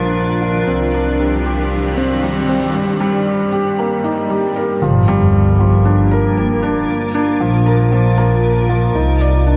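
Piano and strings electronica in G minor at 116 BPM, this moving, melancholic excerpt unfolds in a straight 4/4 and is cut from a longer piece. A felt-muted upright piano carries the riff up front, its mellow, intimate tone touched by tape echo, while a rich studio double bass section plays the bass line, bowed sul tasto with a soft attack and a pure, floating quality. Beneath them, a granular cloud pad holds sustained chords with a blurred, evolving texture, slow attack and long release, bathed in its own built-in reverb. The first 4.8 seconds form a build-up, with an electronic riser from 0.6 to 2.7 seconds and a swell leading into the drop at 4.8 seconds, where a sub impact lands in the background. The harmony moves through Bb, Cmadd9, Eb and Gm7, and the whole mix is soaked in a huge ambient reverb that gives it a dreamy feel.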